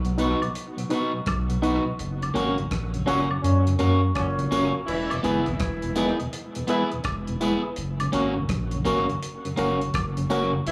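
Laid-back and uplifting, this roots reggae excerpt sways at 83 BPM in 4/4 with swung sixteenths, moving through B, F#, E and F# chords, with a band accent from 2.0 to 4.9 seconds. A deep, round dub sub bass sits up front beside a dark, slightly broken-up picked electric guitar, while a dry, damped 70s drum kit with a tight kick and rolled-off top, a reedy, barky electric piano stabbing through fast tremolo and light overdrive, a smooth tonewheel organ with key click and slow rotary speaker, and close tambourine and woodblock fill out the groove. From 3.1 seconds a mellow, distant horn section adds a second line, and the tape echo on the organ, guitar, drums and horns sits in a small, lightly reverberant room.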